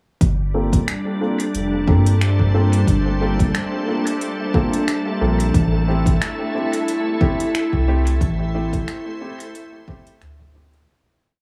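An echo-heavy mix with small room ambience frames this deep, meditative ambient dub piece in G dorian at 90 BPM with a gentle 16th-note swing, where a round, tube-saturated sub bass holds long gliding notes under a soft, overdriven kick, sparse finger snaps and smooth hi-hats trail dub echo, a pure, chorused organ-like pad sustains slowly shifting chords from Gm11 to Am7 at 5.5 seconds, woody upright piano stabs play off-beat chords through a low-pass filter sweep and dub echo, and an airy, breathy wind-like texture holds a high note in the background from 1.5 seconds through the fade-out that begins at 7.3 seconds.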